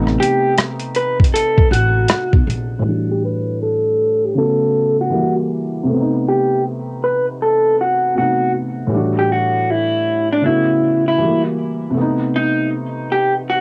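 A slightly broken-up electric guitar through a small old amp carries the melody from 0.2 s, its pitch drifting with a warbly tape wobble over a felt-muted upright piano whose soft, mellow chords come with audible action noise. This dreamy, nostalgic lo-fi hip hop piece moves at 79 BPM with a swung 4/4 feel. A gritty, sampler-style drum kit with a thumpy kick, hi-hat and rim click, and a woody, growly pizzicato upright bass play only at the start, dropping out by 2.8 s, when a filter sweep begins over the remaining guitar and piano in a small booth-like room with a cassette home-recording character.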